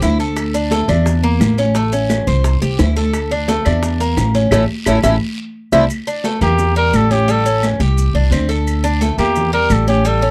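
A punchy trumpet with vibrato takes a solo from 6.4 s over a brisk, nostalgic 174 BPM Cuban son and guajira groove, with a metallic, picked tres playing arpeggios and a growly, thumpy upright bass up front, tight bongos that drop out at 5.8 s, and ringing congas, woody claves, raspy guiro and grainy maracas in the background of this dry, close 1970s-style studio cut.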